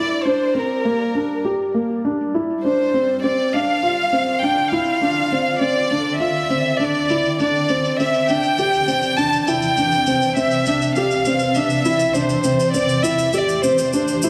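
A mellow, boxy grand piano riff and an up-front chamber violin section playing a sul tasto melody with vibrato and a soft attack open this intimate, cinematic piano-and-strings electronica in D minor at 101 BPM, while a cloudy granular pad fades in beneath them. A distant, roomy shaker played with brushes joins at 0.1 seconds and stays in the background. The piano runs through a digital delay, the pad blurs through its own reverb, and a lush hall reverb of 2.4 seconds surrounds the sound as the chords move from Gm through Dm7 and Cadd9 to Am7.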